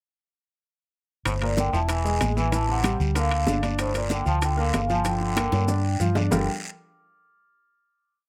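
A driving 190 BPM Afro-Cuban jazz groove in G minor, built on an up-front, dark hollow-body electric bass tumbao that anticipates the chords, a raspy guiro, and background layers of bright high-tuned congas, round bongos with hand bell, ringing metal-shell timbales and grainy maracas, carries a sophisticated vintage vibraphone melody with slow motor vibrato, a buzzy metal-muted trombone harmony line moving mostly in thirds, and an intimate grand piano montuno in octaves with audible action noise, before a drum fill at 5.4 seconds leads to a closing Gm9 chord at 6.3 seconds.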